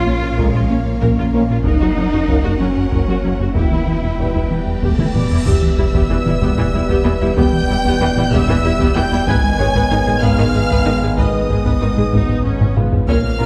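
Brooding and vast, this hybrid orchestral and electronic film cue moves in a slow 6/8 over a dark scoring-stage reverb, with rich bowed violins carrying the high melody and second line above intense violas, expressive cellos, distant double basses and background French horns and trombones. Beneath them sit a punchy, pitch-dropping sub bass, a rubbery square-wave bass riff, compressed, saturated taiko drums, a warbling lo-fi tape pad, faint tine-like synth-pluck arpeggios and a soft felt-muted upright piano with audible action noise. A huge, bright cymbal swell and drum fill crest into a sub-drop impact at 5.5 seconds, opening the second section, and another drum fill arrives at 12.6 seconds.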